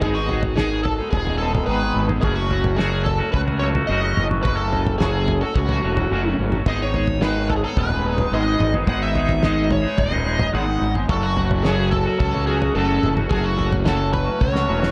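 A damped 70s drum kit with a fat snare, tight kick and toms drives a straight, hypnotic groove in this trippy psychedelic rock excerpt, while a round, fuzzed-out fingered bass sits up front as the chords shift between G#m and F#m. A twangy, clean electric guitar plays a double-tracked riff through a phaser, and a dark, overdriven lead guitar through a small cranked amp carries the melody with wah and tape echo. The echo-heavy mix has light reverb, and a drum fill arrives at 14.4 seconds just before the cut.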